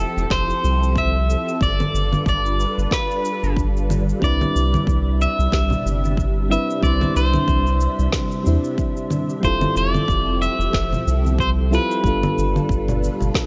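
A relaxed sunset chillout groove opens at once with a twangy electric guitar at the edge of break-up carrying the melody up front, set over a silky string machine holding sustained chords through phaser and ensemble chorus, and a round, dark analog bass anchoring the low end. Within the first half second, an electronic kit of shaker, woody snare and congas joins a deep, layered electronic kick, settling into a 92 BPM pulse in 4/4 with a light swing on the sixteenths. The guitar's picked lines carry a touch of digital delay, while the harmony moves gently in C major from Fmaj9 to G7 before resting on Cmaj9. At 4.2 seconds, mellow electric-piano-like synth keys add soft, decaying accompaniment, shimmering with chorus and delay. Bright, saturated congas sit in the background, appearing briefly near 5.7 seconds and returning for the closing stretch as the chords cycle back through Fmaj9 and G7. 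Light reverb and digital ambience give the short excerpt a hazy, rounded sound with a gently rolled-off top end.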